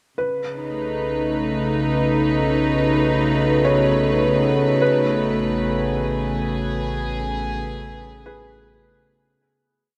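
Soft-attack bowed strings played sul tasto open this luminous ambient piece at 52 BPM on a B9 chord, joined at once by scattered notes from a mellow felt-muted upright piano with tape echo and a round, deep analog bass fading in, while a nasal, chorused analog drone enters in the background at 2.5 s, the harmony moves to Amaj9 at 4.8 s as a fade-out begins, and the piano lingers until 10.0 s inside a cathedral reverb.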